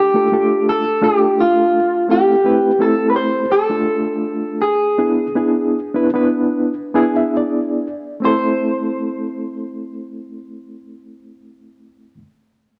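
Blues in A minor at 68-85 BPM, smoky and brooding, cut from a longer piece, with a bright, twangy, slightly broken-up electric guitar through a small old amp carrying the melody with slapback echo over a reedy, worn, slightly out-of-tune reed electric piano with fast tremolo, the tempo slowing from 2.1 to 8.2 seconds as the piano plays a fill from 6.5 seconds, moving through Dm, Am and E7 before landing on Am at 8.2 seconds, all in a moderate plate reverb.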